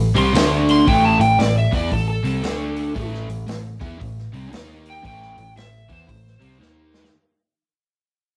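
A double-tracked, overdriven semi-hollow guitar riff sits up front from the start, over a dark, round, foam-muted electric bass, in a brooding, heavy blues rock and southern rock groove with a swung feel. Moments later an overdriven slide guitar carries the high melody while a vintage acoustic drum kit, with a punchy kick and a rolled-off top, plays hi-hat, kick and snare, closing with a fill at 6.6 seconds. The whole short cut is fading out, and a moderate stone room reverb gives it the rough sound of a rehearsal room.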